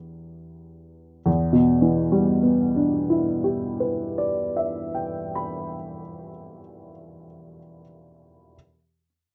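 A warm, worn upright piano plays alone and up front, its woody, slightly detuned tone ranging from E2 to B5 in this wistful, reflective piece of neoclassical minimalism in E minor. The tempo sits around 47 BPM in 4/4 with a rubato feel, opening on an Em7 chord and slowing down over the first 1.3 seconds before a new section begins and runs to 6.3 seconds. Moderate studio reverb surrounds the rough home-demo sound of this short fragment cut from a longer piece, which ends at 8.6 seconds.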